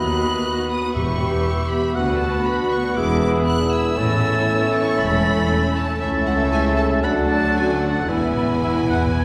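Heard from further back in a wet concert hall, this lively, graceful fragment of a quick classical-period orchestral movement in A major at 117 BPM, played with rubato, sets a rich, expressive violin melody alongside a very quiet second violin line, bright flutes, a clear oboe and a faint clarinet, while a mellow bassoon, background violas, sustained horns, cellos and double basses carry the harmony from B/D# to E, with round soft-mallet timpani at 1.0 seconds and a fill from 8.1 seconds.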